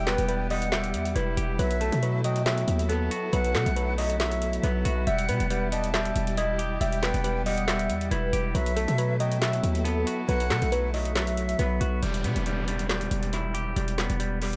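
A dry, echo-heavy mix carries this eerie, dark hip hop and trap excerpt at 138 BPM in a half-time feel in E harmonic minor, where round, mellow electric-piano-like synth keys with chorus, phaser and dub echo carry the melody beneath a breathy jazz flute in the background, a clean, fingered electric guitar, lush bowed strings and a punchy, up-front 808-style bass, joined by a trap kit of woody snare, metallic hats and handclaps, until the keys, flute and strings stop at 12.0 seconds and an electronic downlifter takes the piece to 14.6 seconds.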